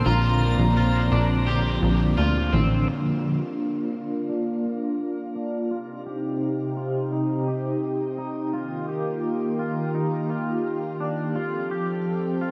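A detuned sawtooth pad sits up front through this ethereal, blissful dream pop excerpt at 85 BPM in Bb major, its slow-attack chords carrying chorus, tremolo and a low-pass filter as the harmony moves from Bbmaj9 through Bb, Cm, Ebadd9 and Fadd9. Beneath it, a bright, twangy electric guitar at the edge of break-up picks filtered arpeggios with delay for the full 12.5 seconds. The opening also brings a punchy, wave-folded analog bass until 2.9 seconds, a crunchy overdriven guitar with harmonic tremolo, a warbling FM bell in the background, and a very quiet reversed granular swell, all set in a dark production with a moderate shimmer reverb and a 4.2-second tail.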